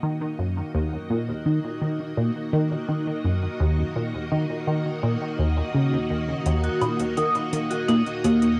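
A lo-fi cassette home recording in a small, wet booth frames this brief excerpt of ambient, sequencer-driven space music in Eb minor at 84 BPM, where a lush vintage string machine fades in with bright ensemble-chorused chords beneath an up-front, detuned sawtooth sequencer riff pulsing through phaser and delay, before tape-softened electronic hi-hat and woodblock arrive at 6.5 seconds and a ringing vibraphone adds delayed arpeggios at 6.6 seconds, leaving an expansive, mysterious mood.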